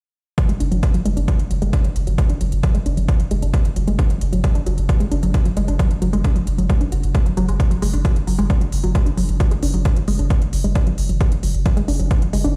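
A punchy, up-front electronic kick and smooth layered hi-hats open this dark, driving peak-time techno excerpt at 133 BPM in straight 4/4, joined at once by a detuned sawtooth unison pluck riff between F#3 and F#4, ring-modulated and sidechain-pumped with dub echo, while a thick, saturated sub bass on F#1 arrives at 0.6 s with overdrive, a low-pass filter and its own pumping, all heard dry yet played through a big sound system in a bare stone room.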